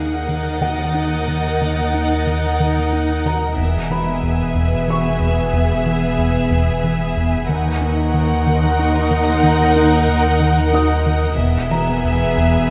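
Uneasy and eerie, this excerpt of a cinematic suspense film score moves at 92 BPM in 3/4, centred on Eb phrygian and shifting between Ebm and E chords. Violin sections carry a smooth, vibrato-rich melody over a lush second line, while a rich viola section fills the middle and a cello section with portamento sits in the background. Beneath them, a very quiet bowed double bass section carries the bass line, a deep sub bass with octave holds a low drone, and a rubbery, wave-folded square bass, the most prominent part, drives a bouncy riff with a resonant filter pluck. A soft, organ-like pad, detuned and warbling with ensemble chorus and built-in reverb, sustains chords. Faint textures drift in and out: a dark, woody violin section high up from 0.0 to 3.2 seconds and again from 7.5, and a felt-muted upright piano with audible action noise, intimate and vintage, from 0.6 seconds. The whole ensemble sits in a moderate scoring stage reverb that gives it space and depth.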